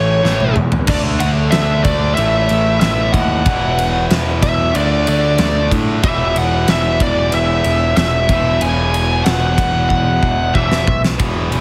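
Powerful and anthemic, this hard rock passage, cut from a longer piece, drives along at 93 BPM in a straight 4/4 and moves through chords of A, D5, A5, E5, D5 and E5. A bluesy overdriven lead guitar carries the melody up front with a dark, distorted tone, while a double-tracked, bright overdriven electric guitar picks out the riff low beneath it. A growling picked electric bass, direct and amped with overdrive, holds down the low end from the very start. The huge arena drum kit comes in at 0.3 seconds with a punchy kick, fat snare, crashes, ride and toms, opening with a short fill and closing with another from 9.9 seconds. Light reverb gives a small-room sense of space, and the heavily compressed, radio-style sound keeps the whole band dense and forceful.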